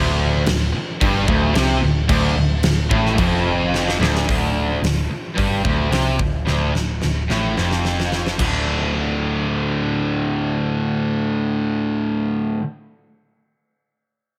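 A cranked stack guitar with bright overdrive drives this energetic, swaggering hard rock excerpt, its riff joined by a compressed, distorted electric guitar riff and underpinned by a dark, round hollow-body bass, while a very quiet, double-tracked crunchy guitar adds its riff only until 4.3 s. A huge arena drum kit joins at 0.5 s with a fat snare, punchy kick and bright cymbals in a pumping hall, firing off fills before dropping out at 8.5 s. The stack and distorted guitars stay up front in a studio reverb.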